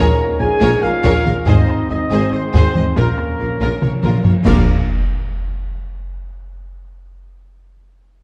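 A dark, roomy scoring-stage sound frames this relentless, epic orchestral film cue in a driving 7/8, cut from a longer piece. Lush bowed violins carry the melody and a second line over distant violas, with cellos, woody double basses and a mellow tuba holding the bass while dark French horns and trombones sustain chords and tight trumpets add stabs. Hard-stick taiko enters at 1.0 seconds, up-front dark cymbals and concert bass drum follow at 1.5 seconds, articulate timpani join at 3.0 seconds for a fill, and a band accent lands at 4.5 seconds before a huge, dark impact sounds, barely audible.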